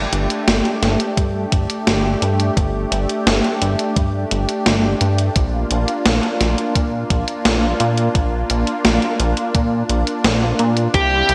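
A straight 4/4 pulse at 86 BPM drives this nocturnal, nostalgic synthwave passage, cut from a longer piece. An up-front gated 80s digital drum machine supplies hi-hat and a gated-reverb snare, and a thumpy electronic kick, re-recorded in a large room, joins at 1.2 s. Underneath, a lush, thick pad of detuned sawtooth voices in unison holds sustained chords with a soft attack, long release, chorus and sidechain pumping, moving from Gsus2 to Bb at 5.4 s. A glossy, nasal synth bass mixing pulse and sawtooth waves adds a filter pluck, saturation and chorus, and it pumps along with the pad. At 10.9 s a dark, high-gain distorted lead guitar breaks in on a picked G4. The whole sits in a moderate hall reverb with bright 1980s-style digital production.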